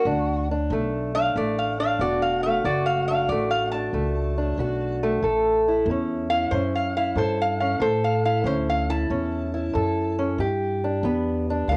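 Acoustic country blues with a laid-back, rollicking swing at 93 BPM in D major, in which an up-front, metallic and nasal lap resonator guitar played with slide and fingerpicks carries the melody over a boxy, dark-toned old ladder-braced acoustic guitar fingerpicked on old strings, while a thumpy, woody pizzicato upright bass with gut strings and tube saturation joins at 0.1 s, as the chords move from D to A to G, all set in moderate studio reverb on a home cassette recording with faint mains hum and cassette tape coloring the two guitars.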